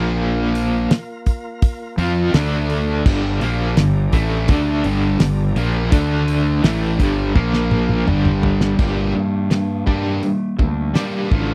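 Driving and swaggering, this classic rock excerpt in G minor at 84 BPM pairs a bright, crunchy guitar riff with tremolo against a sludgy overdriven guitar and an up-front, punchy fuzz bass, while a very quiet tonewheel organ holds full chords through a fast rotary speaker until 8.8 s, and a dry, damped 70s drum kit with a fat snare and tight kick enters at 0.6 s and plays a fill from 7.4 s, captured in a close 1970s-style studio sound with little reverb.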